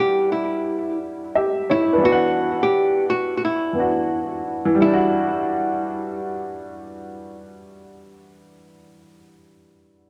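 Hip hop excerpt with a reflective, nostalgic mood, where a dark, hollow-body archtop guitar carries a compact melody until 8.0 seconds over a worn, woody, slightly detuned upright piano that continues to 10.1 seconds, both parts up front, filtered and treated with analog delay, in an echo-heavy mix bathed in spring reverb as the chords move from Em9 to D69 and back.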